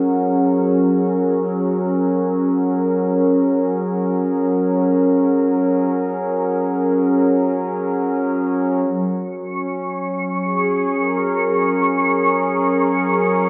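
A detuned analog pad with a smooth, warbling vintage tone sits up front, holding sustained Gb major chords in free time while a filter sweep shapes it through the first 8.8 seconds. Beneath it, a resonant drone with moving overtones and phaser lingers in the background and fades out by 8.9 seconds. At 9.5 seconds a bright, sparkling granular texture with an octave-up shimmer enters up front, and a lush hall reverb surrounds this peaceful, serene ambient excerpt cut from a longer piece.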